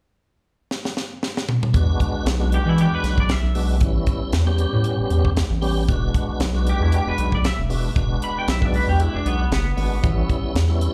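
Gritty and soulful, this straight-eighth soul blues cut opens with a drum fill at 0.7 seconds from a dry, tight funk kit with a high-tuned snare and tight kick up front, then a round, deep analog bass and a lightly overdriven tonewheel organ with slow rotary speaker and chorus vibrato join at 1.7 seconds over E9 and A9 chords, and a bright, twangy clean electric guitar carries the melody from 2.5 seconds through lush chorus and slapback echo, the whole band heard as a live gig through the venue's PA with small-room club reverb.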